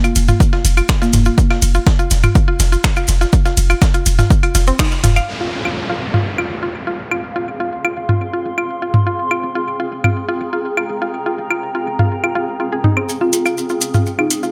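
A straight 4/4 pulse drives this quirky, sparse minimal techno excerpt. It opens on a drop led by a punchy, overdriven electronic kick up front, with an overdriven analog drum machine of finger snaps, hi-hat and ride cymbal in the background, and a gritty, pitched-up sampler-style breakbeat kit with a high-tuned, filtered snare and hats. Overdriven electronic claves and toms and grainy, saturated maracas add percussion, while a deep sine sub bass with a pitch-drop attack pumps against the sidechain. Across the whole cut, a woody, FM-style synth pluck with a noise layer and chorus plays a bright riff through tape echo, and a dry, rustic folk marimba with soft mallets adds short melodic phrases at the start and close. At 5.3 seconds the drums fall away, a downlifter sounds, and an F minor chord arrives. From 6.9 seconds a cloudy, evolving granular pad with built-in reverb sits up front, before the maracas and drum machine return for a brief build-up from 13.1 seconds, all in a light room reverb.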